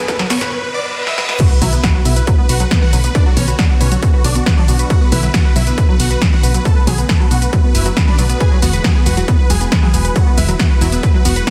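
At 137 BPM in a straight 4/4, this excerpt of uplifting trance in B dorian opens with a brief build-up in which a filter sweep works over a tight, nasal sequenced synth arpeggio, while a riser and then a reverse cymbal carry the first 1.4 seconds. The electronic kick and a punchy analog drum machine come in at 0.1 seconds, the kick layered, overdriven and up front, with crash, hi-hat, shaker, dry snare and toms around it and a drum fill in the build. The drop lands at 1.4 seconds with an impact, and a round, dark FM bass with a fast, decaying attack enters at 1.6 seconds, pumping against the kick. On top, huge detuned supersaw chords carry the melody with phaser, vintage 12-bit sampler grit, sidechain pumping and tape echo, while a silky, very quiet analog string pad sustains chords beneath. The harmony moves from Bm7 to Eadd9 at 8.4 seconds, and the dense, heavily limited master keeps the bittersweet, soaring mood close and dry.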